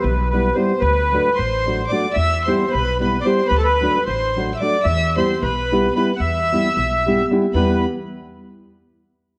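A reedy, sweet accordion carries the melody up front from 0.0 s, its light tremolo tuning giving a shimmer over a dark, woody pizzicato upright bass that thumps underneath. A thumb-plucked classical nylon-string guitar joins at 0.3 s with warm, up-front accompaniment, and a bright solo violin enters at 1.3 s with a second line high above, bowed with vibrato, an airy edge and real intensity. This restless, fiery Balkan wedding-band tune runs in a straight 5/8, with the harmony swinging back and forth between two chords. The whole band sits in a wet recital hall reverb and is coloured by worn, warbling cassette tape with a drifting pitch. It is cut from a longer piece.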